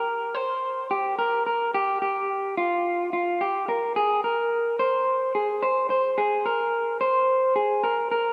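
A lush hall reverb bathes this rough home-demo recording, giving it a long, wet tail of about 2.4 seconds. It is a short indie pop passage in straight 4/4, cut from a longer piece, with a nostalgic yet bright mood. A lone electric guitar played through a small old amp carries the whole passage from 0.0 to 8.3 seconds, its fingered lines staying between F4 and C5. The guitar's tone is dark and slightly broken-up, with a compressed, lo-fi edge, and it sits up front in the mix. The result feels intimate and wistful, like a sketch caught in a big empty room.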